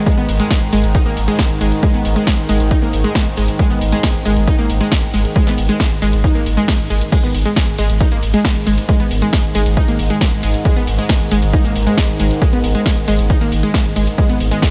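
A straight 4/4 pulse at 136 BPM drives this dark, hypnotic peak-time techno excerpt, with a layered, punchy electronic kick arriving at 0.1 seconds beside an analog drum machine that adds hi-hat, ride, crash and a tape-warm snare. Underneath, a round, deep, mellow sine sub bass holds a sustained G#1 from 0.2 seconds, shaped by tube saturation, low-pass filtering and sidechain pumping. The riff comes from a bright, up-front unison pluck, a detuned sawtooth sound with a noise layer and short decay, moving between G#3 and D#4 through tube saturation, sidechain pumping and tape echo. Behind it, a moody pad drones from G#2 to D#3 with slow attack, long release, chorus, its own reverb and a sidechained pulse. The harmony rests on a single G#5 chord throughout the 14.7-second fragment, set in a light reverb.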